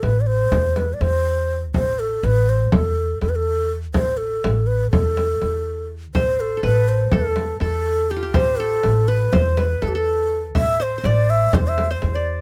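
Closely miked and dry, this melancholic, hypnotic fragment of a Turkish makam ensemble piece moves in 9/8 at 245 eighth-note beats per minute in A makam nihavent, with a breathy low ney carrying the melody up front in a soft-attacked, straight, expressive tone. Beneath it, a woody, thumpy upright bass on gut strings plays pizzicato, and a deep, large frame drum sounds forward in a small room. At 6.2 seconds a bright-edged qanun, plucked with fingerpicks on its triple strings, enters quietly with a second line.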